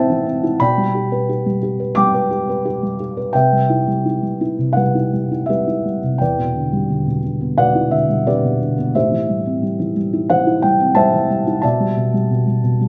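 Brooding and cool, this lyrical classical solo piano passage in E minor moves with rubato at about 88 BPM in 4/4. A felt-muted upright piano sits up front with a dark, boxy, thick-felt tone spanning E2 to D6, its intimate voice bathed in a wet recital-hall reverb, while the harmony drifts from Am7 through G/B, Cmaj7 and Em7, returns to Am7, and arrives on Em7/B at 11.6 seconds.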